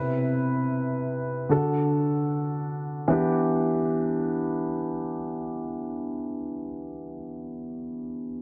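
Melancholic and menacing, this brief hip hop excerpt in free time and E minor features a dark, mellow, boxy grand piano placed up front as accompaniment through the full 8.4 seconds, heard through a low-pass filter with a filter sweep over its first 3.1 seconds, moving through Cmaj7, D and Em7 in light reverb and small room ambience under a dense, heavily limited modern master.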